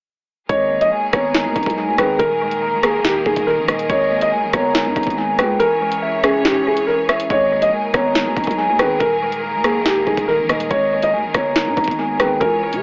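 From 0.5 s a dark, boxy baby grand piano with audible action noise carries a cold, menacing half-time drill melody through dub echo, shadowed above by a hollow, woody clarinet-like synth lead, while muted, warbling felt-like keys pick out a decaying accompaniment and a lush, bowed string section sustains chords beneath. An overdriven, up-front drill kit of knocking kick, sharp snare, bright hats and rim clicks rides over a growling, buzzy 808-style bass, with the kick dropping out between 5.6 and 7.3 seconds. Spring reverb, heavy echo and an AM-radio tone give this fragment of a longer piece a worn, vintage haze.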